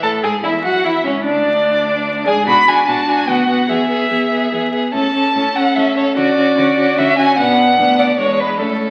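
Classical-period string quartet movement, lively and cheerful at a quick 147 BPM in 3/4 and A major, with a clear, focused first violin singing the melody with vibrato over a smooth second violin line, a rich, up-front viola accompaniment and a close, rich cello bass, all heard through the wet reverb of a recital hall and the crackle of a very old 78 rpm record in this short cut from a longer piece.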